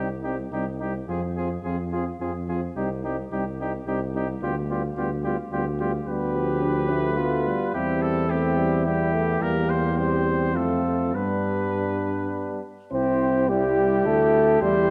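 In a rubato 3/4 at 107 BPM, this stately, noble brass quintet passage, cut from a longer piece, turns from C minor to C major at 6.1 s and arrives on a C major chord at 12.9 s. A clear, distant trumpet carries the melody with light vibrato over a punchy flugelhorn second line, while a mellow, vintage-toned trombone and a French horn set in the background supply accompaniment and a warm tuba sits up front on the bass. The dark production places the quintet in a moderate scoring-stage reverb.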